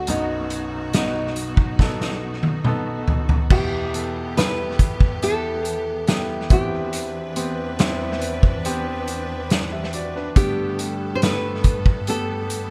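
This pop ballad fragment, cut from a longer piece, carries an emotional, melancholic mood in a straight, unhurried four-beat pulse. A fingerpicked nylon-string guitar carries the melody with a classical touch, fresh strings and audible finger squeak, while a warm, polished baby grand piano plays the accompaniment. Both are dressed in tape echo. Behind them, a bright, lush studio string section holds sustained bowed chords with intense vibrato. A loose indie drum kit sits loudest in the mix, with a punchy kick, a medium-tuned snare, dark cymbals and a roomy, distant character, and it plays a fill from 1.8 to 3.5 seconds before the harmony settles from B into a melancholy drift through Em, Cmaj7/E and Gadd9. Light studio reverb rounds out an echo-heavy mix.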